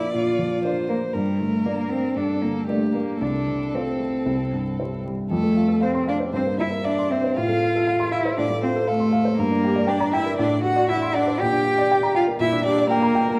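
The cello stands out most, placed up front with a full tone, soft attacks, vibrato and expressive portamento as it carries the second line beneath the violin's smooth, evenly bowed melody. This quick, urgent classical-period movement for piano trio runs at 118 BPM in F major, with an intimate baby grand piano accompaniment whose action noise is audible and whose notes have a short sustain, and a new section begins at 5.3 seconds. A wet recital hall reverb surrounds the restless playing, vinyl crackle runs through this fragment, and it is cut from a longer piece.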